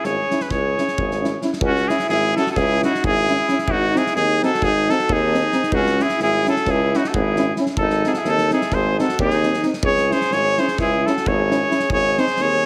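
A muted cornet opens this Balkan brass band excerpt, joined from the start by alto saxophone, tuba and a loose acoustic drum kit, moving at 262 BPM in a restless 9/8 counted in eighths. The cornet, fitted with a straight mute, carries the melody up front with a bright, nasal tone, soft attack and smooth top. The clear alto saxophone sings a second line with vibrato from a more distant, roomy spot. Beneath them the tuba plays the bass with light vibrato and a vintage colour, and the drum kit's punchy kick and medium-tuned snare sit in a pumping studio room with a rolled-off top. At 0.3 seconds a mellow euphonium and a very quiet, warm trombone slip in as accompaniment, the euphonium present though kept in the background. Set in C# harmonic minor, the harmony alternates between C#m and G# for a bittersweet, classical-leaning feel, all placed in a moderate recital hall reverb and heavily compressed into a radio-like sound.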